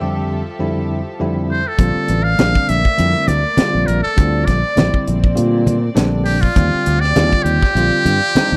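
A buzzy, metal-muted trumpet with light vibrato and slapback echo carries the up-front melody from 1.5 seconds in this bright, slick electric jazz fusion excerpt, over bell-like tine electric piano and reedy, gut-toned bowed strings, while fretless bass with subtle chorus, a tight funk drum kit with a high-tuned snare and soft-handed background congas join at 1.8 seconds as the harmony moves from Fmaj9 to Bbmaj9, wrapped in dark, warm studio reverb.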